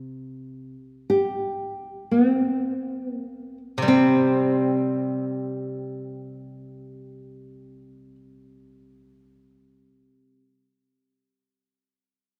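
This excerpt of Chinese traditional music, played by a small chamber ensemble in free time, has a wistful, graceful mood. A steel-string zither plucked with fingerpicks opens the piece, and its ringing, silvery accompaniment sits in a low-to-middle register up front. At 1.1 s a nylon-string guitar enters with the melody, thumb-plucked in a warm classical style and also placed up front, slightly louder than the zither. The opening passage slows down until a new passage begins at 3.9 s, and the guitar falls silent at 8.2 s while the zither carries on briefly. A wet concert hall reverb gives both instruments a long, spacious tail.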